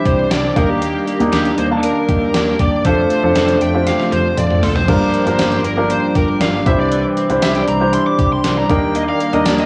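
A dark, high-gain lead guitar solos through this nostalgic, dramatic 1980s-style pop excerpt at 118 BPM, backed by a clear, up-front baby grand piano, a brassy sawtooth pad with chorus sitting in the background, a bright, clean picked electric guitar riff, a punchy fretless bass and a gated, overdriven digital drum machine with a thumpy kick and a fill from 3.9 to 4.9 seconds, all over chords moving from Cadd9 to Ebmaj7, Dm7/F and Gm7 with a cassette-tape, small-room home-recording character.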